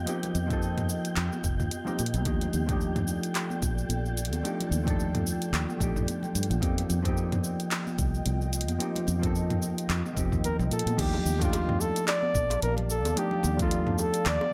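A mellow, close-miked flugelhorn sits up front from 10.4 seconds, singing a jazz-style solo with vibrato through a digital delay over a smooth, warm sunset chillout groove that drifts between suspended and lush major-ninth harmony. Beneath it, a dark hollow-body jazz guitar with delay plays clean fingered accompaniment, a round foam-muted electric bass anchors the low end, and an ethereal pad with ensemble chorus holds slow-attack chords, while a breathy wind-like noise texture hovers in the background until 11.0 seconds. A deep electronic kick and a layered deep house kit of cabasa, hi-hat, handclaps, toms and crash drive the lightly swung feel, with bright, saturated congas and bongos tucked behind, all in a moderate plate-reverb ambience.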